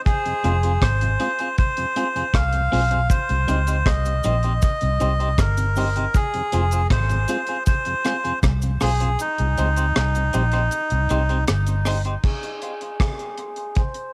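A reedy, breathy melodica carries the hypnotic melody of this deep dub reggae excerpt over a dry, tight reggae drum kit, a round, punchy foam-muted bass, twangy electric guitar with harmonic tremolo and a mellow, slow-rotary tonewheel organ in the background, with a cabasa entering at 3.1 seconds, the kick dropping out at 9.2 seconds as a filter sweep begins, and the whole captured on cassette in a small home room, with tape echo trailing the melodica, guitar, organ and cabasa.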